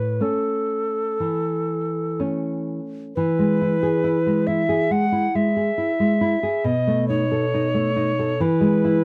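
An airy alto recorder with vibrato and a tongued chiff sings a tender melody over a dark, full-bodied, thumb-plucked nylon-string guitar in this serene romantic duo at a rubato 60-70 BPM in 4/4, which moves from A major to E major at 3.2 s and touches B7 at 6.6 s before returning to E, both instruments close and up front in light reverb.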